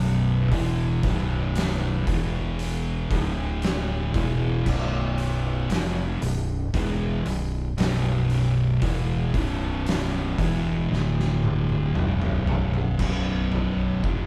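Stoner and doom metal in B minor at a crawling 58 BPM, this sludgy, hypnotic excerpt sets a thick, double-tracked fuzz guitar riff over B5, E5 and D5 power chords above a growling, overdriven fingered bass and an oversized, low-tuned drum kit with a fat snare, punchy kick and dark cymbals, all played live in one room, with a drum fill from 10.9 to 13.0 seconds leading into a brief new section before the cut at 14.3 seconds.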